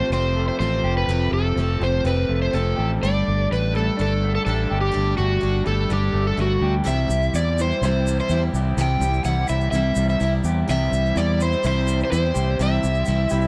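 A straight 4/4 pulse at 125 BPM drives this hopeful, nostalgic slice of folk rock and heartland rock, cut from a longer piece and moving from Fadd9 to Gsus2 and on to C. Up front, an overdriven slide guitar carries the melody with a dark, gritty tone and a tape echo trailing its lines. Beneath it, a jumbo steel-string acoustic guitar is picked with a bright, full-bodied ring, while an electric guitar through a small old amp plays a slightly broken-up, lo-fi riff touched by subtle chorus. A fingered electric bass sits prominently in the mix with a direct, amped sound, and a very quiet, dark string section holds soft-attack chords, bowed sul tasto with light vibrato and a smooth, intimate top. At 6.9 seconds a grainy egg shaker joins, its bright tick heard in a small room, and the whole band is placed in light studio reverb.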